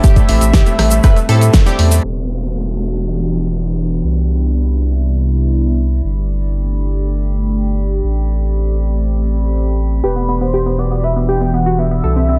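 A driving 120 BPM drop in straight 4/4 opens this dreamy progressive house cut in E minor, with a punchy, up-front electronic kick, a deep house kit with fat snare, rim click and hi-hat, and a grainy shaker all stopping by 2.0 seconds. A band accent lands at 1.5 seconds. From 0.3 seconds a thick, saturated sine sub bass holds the low end, while a bright concert grand piano plays filtered stabs with tape echo and a round, wave-folded analog pluck arpeggiates, both pumping against the kick, and a nasal, detuned unison lead sings briefly above. A morphing, phased wavetable pad enters at 0.9 seconds, and after the drums fall away it carries Em7, Cmaj7, Gsus2 and Am7 chords, a downlifter sweeps through, and glassy drifting overtones appear high above. At 10.0 seconds the pluck returns alongside the unison lead, now with vibrato and lo-fi sampler grit.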